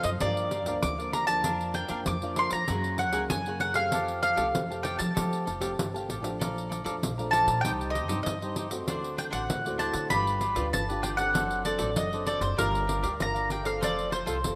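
A straight 4/4 pulse at 97 BPM drives this festive, playful samba and choro passage in Bb major, cut from a longer piece. The jingly pandeiro, played with soft hands and carrying a small-room character, keeps the percussion going from start to finish. Up front, a bright mandolin carries the melody with picked double strings and a woody tone, reaching from Bb4 to D6. Beneath it, a crisp, picked cavaquinho and a classical nylon-string guitar share the accompaniment; the guitar is thumb-plucked with audible finger squeak, and the cavaquinho drops out at 14.4 seconds. A pizzicato upright bass with steel strings lays down a warm low end between F1 and F3, while the harmony moves through colours such as Gm7, Gbadd9, Bbmaj7 and D7/F# before settling on F. A lush hall reverb surrounds the group, and the rough, homespun demo mix gives the whole performance an informal, unpolished feel.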